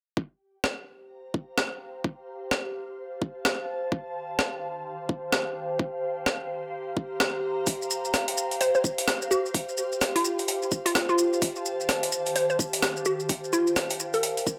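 A swung two-step UK garage groove at 128 BPM in 4/4 drives this bouncy, soulful excerpt in C dorian: an overdriven, knocking electronic kick sits up front beside a gritty, compressed sampler-style breakbeat kit of hi-hat and rim click. An ethereal, airy pad with ensemble chorus, phaser and sidechain pumping carries the F, Eb and Gm7 changes across a range from Eb3 to Bb5, while grainy, close maracas join at 7.7 s. At 8.6 s a hollow, detuned square-wave pluck enters with the melody, dressed in analog chorus and delay, and a wet plate reverb with a 0.9-second decay surrounds the mix.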